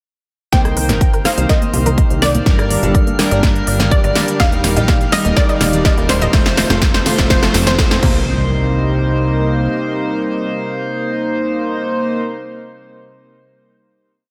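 The punchy electronic kick sits up front in this driving, dreamy progressive house piece at 124 BPM in C dorian, a four-on-the-floor pulse joined by a big-room drum kit with a crisp programmed backbeat, crash and rim clicks, while very quiet congas ring softly close and dry from 0.8 s. A funky plucky analog bass with a dotted rhythm and a retro, glossy chorused polysynth pumping held chords with syncopated pushes anchor the harmony as it moves through Cm7, Gm, Eb and F. In the background, a round analog pluck runs a three-step arpeggio that drifts against the bar under a filter sweep, a lush detuned unison pluck carries the motif-based melody with a smooth supersaw doubling it through digital delay, and a thick, warbling vintage pad holds sustained chords. A glassy sine texture floats a single high F5 with drifting overtones from 1.6 s, and a faint riser and impact enter at 4.0 s. The whole track is a build with a drum fill, giving way at 8.3 s to a final hit where the pad, polysynth stabs and impact ring on to the end in light digital ambience.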